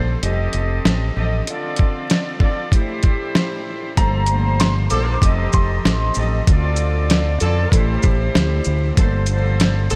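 Vinyl crackle sits over light reverb and studio ambience in this dark, reflective boom-bap hip-hop excerpt, set at 96 BPM in 4/4 with a swung sixteenth-note feel in G minor. A bowed string section with a soft attack and floating, smooth top carries the accompaniment through a cassette-tape haze, while a deep dub fingered electric bass sits up front, round and dark. The gritty, compressed sampler-style drum kit, with its thumpy kick, medium-tuned snare, hi-hat and shaker, sounds tape-warm and sits up front. At 4.0 seconds a worn, woody upright piano, slightly detuned and coloured by lush chorus, plays a brief high melody that ends at 6.4 seconds. From 4.9 seconds a tight horn section adds light-vibrato stabs in the background through an analog delay, over a looping progression of F7, Dm7, Am7 and Gm11.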